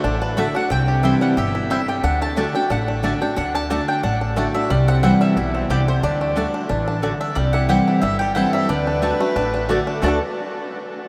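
Virtuosic and lively, this swung bluegrass excerpt at 180 BPM in D mixolydian sets a bright, round picked mandolin melody over a full-bodied dreadnought guitar with audible finger squeak, twangy, percussive fingerpicked banjo arpeggios and a growly pizzicato upright bass sitting up front. A second, very quiet, woody mandolin adds stabs from 0.4 seconds, while the harmony alternates between D and C. At 7.4 seconds a dark, distant bowed fiddle with light vibrato slips in behind with a second line, and the whole band rings out in a vast, echoing space with a huge, wet reverb.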